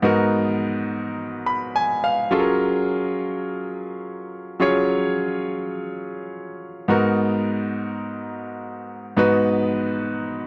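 R&B at 105 BPM in G# dorian, bouncy and slick with a swung sixteenth-note feel, carried by a solo concert grand piano that sounds bright, polished and up front with deep bass across G#2 to B5, adding a short fill at 1.2 seconds as the harmony moves from G#m9 to F#maj9 at 2.3 seconds and returns to G#m9 at 6.9 seconds, set in a moderate echo-chamber reverb within a dark production.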